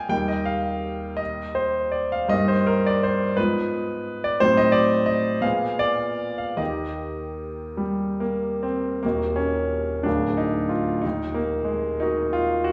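Warm and lyrical, this romantic character piece for solo piano moves in 6/8 with free rubato, its tempo hovering around 47 to 62 beats per minute in dotted quarters. The grand piano sounds brilliant and polished, sitting up front with long sustain and audible action noise that lends a close, personal quality. It ranges from a deep D1 up to Ab5. The opening phrase rests in Eb major, drifting through darker diminished and dominant harmonies before settling home on Eb. At 9.0 s the music turns to Eb minor, giving the closing bars a more shadowed colour. A wet recital hall reverb surrounds the instrument, heard from further back in the room, and the passage is cut from a longer piece, breaking off at 12.7 s.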